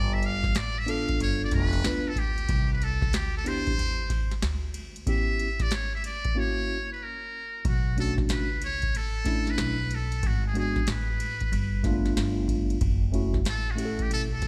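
Smoky and cool, this jazz-hop cut moves at 93 BPM in B minor with a lazy 16th-note swing, and it is taken from a longer piece. A muted trumpet carries the melody from the very start, its metal mute giving a buzzy, thin, brilliant edge with light vibrato, placed up front yet sounding distant and roomy; its solo runs to 7.7 seconds, with a break arriving at 6.4 seconds. Beneath it, a pizzicato upright bass with steel strings sounds woody and dark, while a booming analog drum machine enters at 0.2 seconds with a deep kick, tonal snare, metallic hats and ride, tape-warm and forward in the mix. A mellow tine electric piano, clean and heard through its built-in speakers, comps from 0.9 seconds through rich chords such as G9, C#m7b5 and F#7 before the second section opens on Bm9. Light reverb gives the whole a softly lit, late-night atmosphere.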